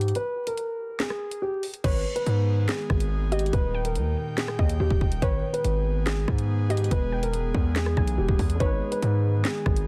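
A punchy, heavy 808 bass anchors this cold, dark drill excerpt at 142 BPM in half-time G# harmonic minor, set against an up-front drum kit with a hard-clipped kick, sharp snare and bright hats. A boxy, low-passed piano melody echoes through digital delay, joined at 1.8 s by a warbling lo-fi pluck with chorus and delay and at 2.1 s by a soft, breathy pad. A second, mellow piano slips in quietly in the background at 8.6 s, all within a dry, dense, heavily limited mix dusted with vinyl crackle.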